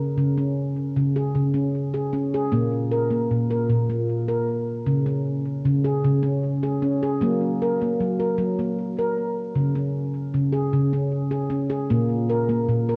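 A home cassette recording with light reverb and a small-room ambience frames this gentle, dreamy piece of meditative world music, cut from a longer work. A solo handpan of nitrided steel plays alone and up front for the full 13.0 seconds, its ringing, mellow tone struck with soft fingertips and colored by cassette tape and tape echo. The unhurried 6/8 pulse sits at 51 BPM in dotted quarters, moving between Db5 and Gb harmonies.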